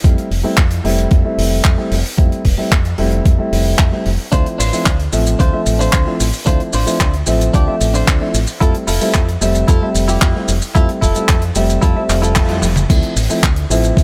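An up-front, overdriven electronic kick knocks through this sleek, groovy nu-disco excerpt at 112 BPM, joined by a tight acoustic funk kit with hi-hat, shaker, handclaps, toms and crash, a round, punchy fingered bass through an envelope filter, and a dark, mellow concert grand piano pumping under sidechain with digital delay over Fmaj7 and Dm7, while a bright, twangy clean electric guitar riff with lush chorus and delay enters at 4.3 seconds before a band accent, a drum fill and a drop at 12.9 seconds, all in a small room.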